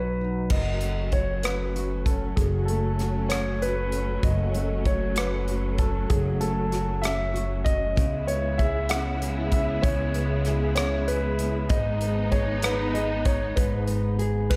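In a slow 6/8 at 64 BPM, this dramatic, aching pop ballad excerpt sets a warm grand piano melody with slapback echo over fingerpicked, double-tracked nylon-string guitar and a woody, thumpy pizzicato upright bass, while a lush, bowed string section with expressive portamento and a punchy, airy country drum kit of kick, hi-hat, rim click and crash join at 0.5 seconds, moving from B through F#m and C#m7 to G#m in a big, arena-like concert hall reverb.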